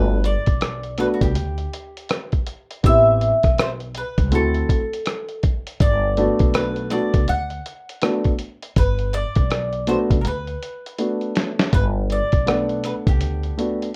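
A picked, round-toned mandolin with doubled strings carries the melody in this smooth jazz-hop excerpt in G major at 81 BPM, with swung 16ths, over a vintage grand piano with short sustain moving through Gmaj7, Am7 and D7. A woody, growly pizzicato upright bass and a muffled, compressed sampler-style drum kit with a thumpy kick, medium-tuned snare, hi-hat and rim click sit up front; the kit enters at 0.2 s and plays a fill from 10.2 to 11.7 s. Light reverb and a rough home-demo mix give the hip hop groove a warm feel.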